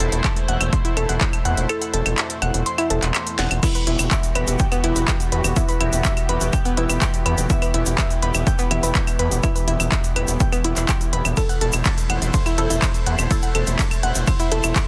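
A straight 4/4 pulse drives this dark, cinematic melodic techno excerpt, where a punchy, tape-warm electronic kick drops out from 1.7 to 3.6 seconds around a drum fill, while a techno kit of cracking snare, smooth hats, claps, claves, ride and crash pumps alongside a gritty, saturated synth bass, woody wave-folded pluck arpeggios with digital delay, a lush detuned pad under chorus and phaser, a very quiet muted dub chord stab, a faint drone of moving overtones, and a grainy egg shaker that joins at 3.6 seconds over a dense, heavily limited master.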